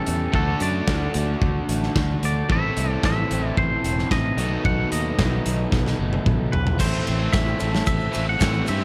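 A clean, twangy electric guitar carries the melody with a shimmering tremolo in this moody, cool indie rock excerpt at 112 BPM, moving over D, Am and B7 chords. Two bright, overdriven guitars play picked riffs beneath it, the quieter one set back with a lush chorus, while a round fingered bass and a punchy, up-front rock kit with a rolled-off top and a big-room sound anchor the groove. A drum fill at 5.7 seconds leads into a new section at 6.8 seconds, where a very quiet, grainy vintage tube shaker joins.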